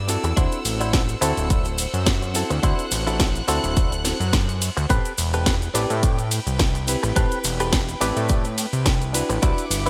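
A bright symphonic string section holds distant, bowed chords with light vibrato from the very start, pumping in the mix, while a fat, detuned sawtooth bass with a filter sweep and fast attack sits up front underneath. This groovy, sleek nu-disco passage, cut from a longer piece, moves at 106 BPM in 4/4 with a light swing on the sixteenths, shifting from D9 to Am9 at 4.9 seconds. A reedy, barky electric piano comes in almost at once, lightly overdriven with fast tremolo, digital delay and pumping, joined by a twangy, compressed clean guitar riff recorded direct and treated with chorus and delay. The house kit brings a cracking snare with hi-hat and ride, a very quiet cabasa layered with tube shaker and group handclap stays close and dry, and a punchy, tape-warm electronic kick lands up front at 0.4 seconds. Light reverb frames the 1980s-style digital production.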